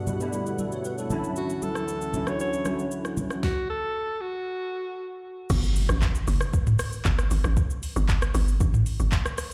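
This soulful, relaxed amapiano cut moves at 116 BPM in a straight 4/4 in G lydian, its harmony shifting from Gmaj9 to Dmaj9 and settling on Gsus2. A bright, bell-like tine electric piano carries the accompaniment with an ensemble chorus and a short fill, over a lush, detuned sawtooth pad that holds sustained chords. A soft-kicked, fat-snared electronic R&B kit with metallic hats, handclaps, rim clicks, shaker, toms and crash runs throughout, with damped, thin-skinned congas sitting in the background early on. A breathy alto saxophone enters at 1.4 seconds with a smooth, light-vibrato pop melody colored by tape echo, carrying on through a stop at 3.4 seconds. At 5.5 seconds the drop arrives with a bouncy, hollow FM log drum bass placed up front and an electronic impact, after a faint downlifter opened the passage. The whole sounds as if played over a big sound system in a bare room, with a large studio reverb.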